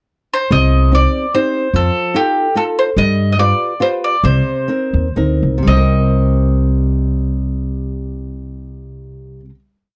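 Set in a lilting 3/4 with a light swing and rubato, this short, complete Italian serenade moves between 117 and 148 BPM in C dorian, slowing from 3.0 to 5.7 seconds before a final chord rings out from 5.7 seconds. A mellow bowl-back mandolin carries a picked, motif-based melody in period phrases on its doubled strings, while a fingerpicked flamenco guitar supplies an oompah of bass notes and chord figures with audible finger squeak, and a woody, growly pizzicato upright bass plays root and fifth on the main beats. The mood is passionate and wistful, captured close and dry in a 1970s-style studio sound with light reverb and all three instruments up front.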